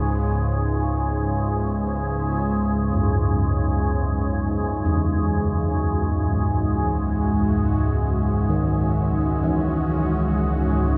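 Cavernous and desolate, this dark ambient drone drifts in free time, a brief stretch cut from a longer piece. An organ-like drone sits up front from the start, calm and sine-based, its detuned unison voices thickened by ensemble chorus and built-in reverb, with slow attacks and long releases that keep it hanging in the air. Above it, a sweeping resonant pad holds sustained chords, airy and bright with a sawtooth edge, a noise layer and a filter swell. This pad fades in across the whole passage, evolving under its chorus. At 2.9 seconds gamelan-type bossed gongs enter with arpeggios, their bronze tone metallic, round and dark, beating as delay trails each stroke. The whole recording is bathed in a huge, wet reverb with an 8.1-second decay, giving the sense of a vast, empty space.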